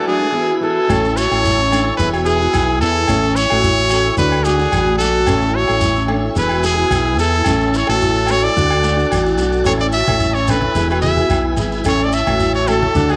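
A lightly swung 16th-note groove at 110 BPM in 4/4 drives this sunny highlife guitar band excerpt in A major, cycling through A, E and D chords. A short break opens the piece, where a raspy, gritty tenor saxophone sounds a single E for the first 0.6 seconds beneath the brilliant, up-front trumpet, which carries the jazz-style melody throughout with scooped notes, light vibrato and a tape echo. At 0.9 seconds a round, punchy fingered electric bass arrives alongside ringing agogo bells and a grainy shekere, both set distant in a large room, while close, dry, low-tuned congas join at 10.1 seconds. Around the melody, a vibraphone with soft mallets plays airy arpeggios with a medium motor vibrato, a small, dark nylon-string guitar is fingerpicked in the background, and a piping tonewheel organ holds sustained chords through a slow rotary speaker with light overdrive. A moderate echo chamber reverb gives the recording a warm, spacious glow.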